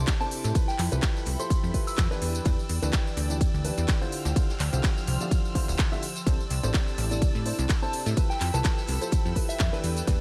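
A lightly swung 4/4 piano house groove with a joyful, feel-good glow pumps beneath a punchy, up-front electronic kick, crisp house-kit handclaps, hi-hats, ride and tambourine, and a very quiet, rolled-off vintage kit of snare, shaker and hats. A funky, plucky analog bass, a woody, slightly detuned upright piano riff with audible action noise and delay, lush distant violin chords, and a dark, nostalgic lo-fi pad all ride the sidechain-pumped sway over extended jazzy chords, while a pure, gentle FM bell melody with chorus and delay appears at 0.2 and 7.8 seconds.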